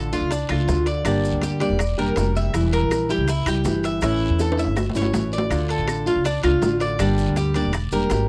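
A straight 4/4 pulse at 162 BPM drives this short cut from a longer Cuban son and guajira piece in D harmonic minor, warm and danceable in mood. Up front, a fingerpicked classical nylon-string guitar carries the accompaniment while a bright, metallic Cuban tres picks arpeggios on its double strings, some of them octave-doubled. A dark, thumpy pizzicato upright bass with gut strings anchors the low end. Further back sit tight, high-tuned bongos struck with hard hands, ringing metal-shell timbales, woody claves, a raspy guiro in a small room, and grainy, mellow maracas that sound distant in a large room. The chords move from Dm through Gm, Edim and A before returning to Dm and Gm, with a drum fill between 4.4 and 5.5 seconds arriving just before that return. It all comes across as a dry, close 1970s-style studio recording with little reverb.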